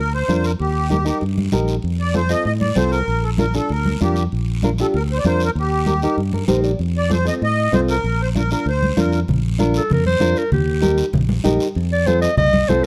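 Festive and danceable, this cumbia excerpt moves at 193 BPM in Bb major, with a sweet, reedy accordion carrying a solo from the start over a round, dark fingered electric bass, a thumb-plucked nylon-string guitar with audible finger squeak, soft-handed congas in the background and a raspy guiro. The guitar slips in a brief fill at 6.2 seconds, and after the accordion stops at 9.2 seconds a present, classical-style clarinet takes the melody at 9.8 seconds. The sound is close and detailed with light reverb, the bass, accordion and clarinet sitting up front over a simple Bb, Eb and F7 progression.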